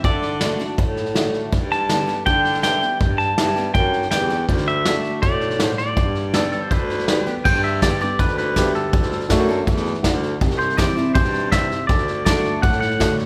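Set in a moderately reverberant church or concert hall, this nostalgic, easygoing honky-tonk and classic country excerpt opens with a bright, twangy pedal steel guitar carrying the melody up front with fingerpicked slide and volume swells until 7.0 seconds. Beneath it sit a bright, full-bodied picked dreadnought acoustic guitar, a soft, distant baritone saxophone with light vibrato holding down the bass, a punchy vintage brush kit with dark cymbals, and a mellow, woody, slightly detuned upright piano tucked in the background. A clean, compressed electric guitar enters on a second line at 6.3 seconds, and a clean electric guitar solo takes over from 7.5 seconds to the end.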